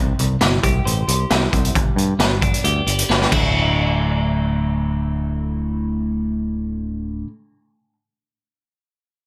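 A light reverb and a touch of studio ambience frame this short cut from a longer quiet-loud alternative rock piece, which moves at 134 BPM in a straight 4/4 and is tuned slightly flat to A4 = 436 Hz. Up front, a bright, clean twelve-string electric guitar plays twangy, compressed arpeggios through a phaser over a C, G and Dsus2 progression. A picked electric bass adds a growly low end, heard both direct and amped. A raw garage drum kit in a small room brings a gritty, saturated punch with a boomy kick, a high-tuned snare, hi-hat and crash, all mid-forward with a rolled-off top. The drums play a fill at 3.1 seconds and drop out at 3.4 seconds, leaving the guitar and bass to carry the second section on their own. The mood is anthemic and cathartic.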